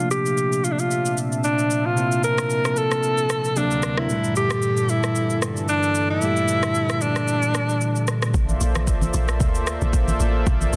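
A swung 113 BPM amapiano groove in 4/4 rides on an up-front electronic drum kit of deep kick, rim click and shaker with a softly clipped snare, while a smooth, chorused sawtooth pad pumps beneath clean, filtered tine electric piano chords moving from Bbmaj9#11 through D7b13 to Gm69. A breathy alto saxophone carries the soulful, hypnotic melody with vibrato and a touch of delay until about 8.1 seconds, the kick mutes at 7.3 seconds, and the drop at 8.3 seconds brings in a round, dark log drum bass and damped, thick-skinned congas in the background. The mix sits in light digital ambience under a dense, heavily limited modern master, cut from a longer piece.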